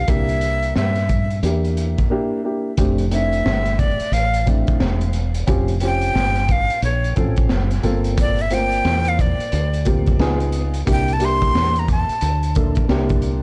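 Cool and relaxed, this jazz-hop excerpt moves at 89 BPM in 4/4 with a lazy swing on the sixteenths, settled in F major. A crunchy breakbeat kit sits up front, its saturated, gritty sound carrying a tight kick, a high-tuned snare and hi-hat under a rolled-off top. A woody fretless electric bass, round and hollow, holds the low end from the start, while a dark, mellow upright piano fills in the harmony just behind it. A breathy, bright flute with vibrato and a crisp, chiffy attack carries the melody through a tape echo, and after a short break from 2.1 to 2.8 seconds it takes a solo that runs over chords such as F69, Gm11 and Db9. The whole track is dry and close, with the grainy character of a cassette recording.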